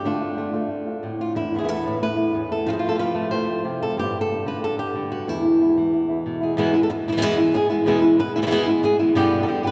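A fingerpicked flamenco guitar with fresh, warm strings and audible finger squeak carries the fiery, passionate melody up front at a brisk 184 BPM. A darker, thumb-plucked second guitar adds stabs under chords like Dm7, Esus4, F and Gadd9 until it drops out at 6.6 seconds, and the lead guitar continues alone into a new section, all bathed in the long, wet reverb of a church or concert hall in this short cut from a longer piece.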